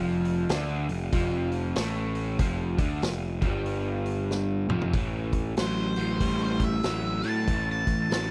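A swung 4/4 groove at 94 BPM drives this heavy, smoky blues rock and southern rock power-trio excerpt in A minor, with a crunchy, double-tracked overdriven guitar riff and a growly, fuzz-drenched picked bass up front from the start, joined at 0.2 seconds by a punchy, gritty vintage drum kit with a medium-tuned snare and rolled-off top. After a drum fill, the harmony moves from F69 to Am at 4.9 seconds, and a dark octave-fuzz lead guitar solo enters at 5.6 seconds with wah, distortion and slapback echo. The sound is a dry, close 1970s-style studio recording.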